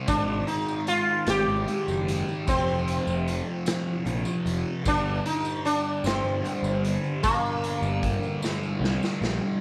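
A slow 6/8 pulse at 50 dotted-quarter beats per minute drives this dark, trippy psychedelic rock fragment, cut from a longer piece. A raw, gritty garage drum kit, with its punchy kick and saturated, pumping stone-room sound, is joined by a jingly tambourine in the background, while a fuzz-laden picked electric bass growls low. A thick, double-tracked fuzz guitar riff treated with phaser sits up front beside a buzzing, shimmering plectrum-plucked sitar melody with slapback echo, moving over Ab5, F5 and G minor chords before a drum fill at 8.4 seconds, all in a lightly reverberant studio space.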